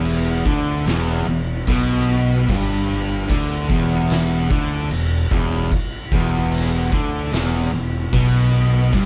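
A slow, straight 4/4 pulse drives this ominous, heavy stoner and doom metal excerpt. An oversized low-tuned drum kit comes in at 0.1 s with a boomy kick, fat snare and dark crash cymbals, set up front in a stone room that pumps around it. From the start, a double-tracked fuzz guitar sits forward with a picked, low-register riff, alongside a bright, compressed, double-tracked distorted electric guitar placed lower in the mix. Beneath them, a growling fingered electric bass, heard direct and through an amp, adds overdriven grit. The band plays live in one room with light reverb, and the muffled top end gives the riff over its single chord a thick, murky weight.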